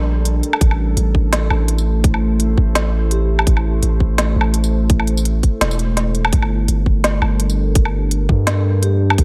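A dark, detuned ambient pad with chorus and sidechain pumping opens alongside a deep, sine-toned 808-style bass in this heavy, cinematic half-time drum and bass excerpt, soon joined by an up-front organic electronic kit with a woody snare and crisp hats and by a tight, layered kick, while a soft-mallet vibraphone rings a single G4 in the background at 3.1 and 8.8 seconds through a diffuse ambient delay over chords shifting between Gm and Am.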